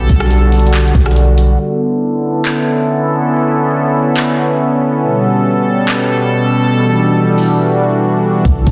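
Atmospheric cloud-rap hip hop with a hazy, ethereal mood, moving in a half-time feel in 4/4. A bright, evolving sawtooth pad sits up front, holding sustained chords with a long release. It is coloured by chorus, a low-pass filter and sidechain pumping, and a filter sweep runs through it from 1.6 to 8.5 seconds as the harmony moves from Gmaj9/B through Bm11, A9/B and Em11/B. A deep, round 808-style bass with a fast attack and a decaying sine tone also sits up front, dropping out at 1.6 seconds and returning briefly at 8.5 seconds. The smooth R&B drum kit enters at 0.1 seconds with a soft kick, metallic hats, handclaps and rim clicks, its electronic sound re-recorded in a large room and set lower in the mix than the pad and bass. Light reverb and a dense, heavily limited modern master frame this short passage, cut from a longer piece.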